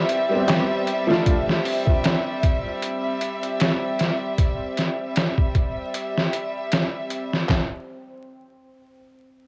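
A gritty, pitched-down sampler-style drum kit sits up front in this hypnotic, brooding trip hop excerpt at 77 BPM in A minor, its thumpy kick, medium-tuned snare, hi-hat and handclaps compressed and re-recorded in a small room with a loose 16th-note swing. A lush, vibrato-laden violin section holds sustained chords over an Am7 alongside a tense, string-like sawtooth drone with phaser and its own built-in reverb, while a woody, vintage upright piano with tremolo and tape echo plays only until 1.6 seconds and a crisp, deep metal-shell darbuka, struck with hard hands, sounds briefly in the background around 0.5 seconds. Cassette tape grain, vinyl crackle and light small-room reverb give the whole a homemade feel, with the chord dropping out at 1.3 seconds and the drums carrying on to 7.7 seconds.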